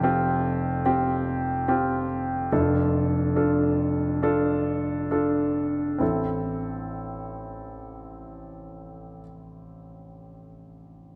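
In a straight 4/4 pulse that slows down over the first 6.0 seconds, this short pop fragment unfolds at an unhurried, reflective pace. A single grand piano carries the accompaniment from start to finish. Its warm, polished tone sits up front, with long sustain that lets each chord hang in the air across a range from deep bass to the middle register. The harmony moves from Fsus2 to Dm/F before settling onto A minor at 6.0 seconds, where a new section begins and deepens the longing, heartbroken mood. A wet concert hall reverb surrounds the instrument with a spacious tail, and a faint mains hum lingers beneath the music; the piano stops at 11.2 seconds.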